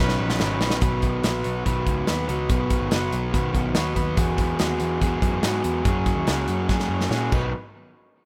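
Jangly indie pop at 143 BPM in B major, breezy and nostalgic, opens with a drum fill as a brilliant trumpet with light vibrato sounds a brief B4 through digital delay in the background and a distant, crisp handclap flickers at 0.4 seconds, while from the very start an up-front overdriven garage guitar, a very quiet twangy twelve-string playing arpeggios, a dark foam-muted picked bass and a punchy acoustic kit in a pumping room drive through B, Eadd9 and F#add9 to a closing fill in a rough home-demo mix.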